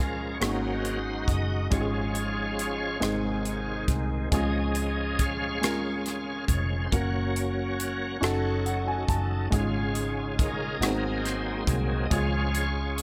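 A slow 6/8 pulse at 46 BPM, counted in dotted quarters with a straight feel, carries this hopeful, uplifting gospel passage in Db major, cut from a longer piece. A bright tonewheel organ takes the solo from the opening, its full, shouting tone pushed up front through a fast rotary speaker, light overdrive and chorus vibrato while it holds sustained chords. Beneath it, a woody, slightly detuned upright piano with a long, smooth sustain plays accompaniment and steps forward with a fill between 8.2 and 9.5 seconds. A vintage foam-muted fingered electric bass gives a dark, round, punchy low end, and a crisp fusion drum kit joins at 0.4 seconds with hi-hat, rim click and a punchy kick in an airy, polished studio room. The harmony moves from Ab9sus4 through Db, Gb and a colorful Gbm6 before resolving via Ab7 back to Db, all set in light reverb.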